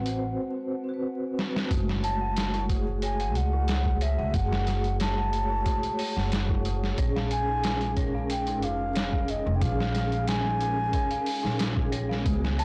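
Melancholic and dark, this trip hop excerpt moves at 91 BPM in F# minor, with a mellow, airy baroque flute carrying the melody through dub echo over a ringing vibraphone with tremolo and tape echo, a woody, saturated upright bass played pizzicato, and a compressed, pitched-down sampler-style drum kit with a thumpy kick that sits up front. A very quiet, breathy wind-like noise texture enters at 0.5 seconds, and after a drum fill an eerie, inharmonic synth bell adds chorused, 12-bit gritty arpeggios in the background from 1.7 seconds as the chords move from Am6 to F#madd9 and then A#m7. The recording is dry, blown-out and overdriven, with vinyl crackle throughout.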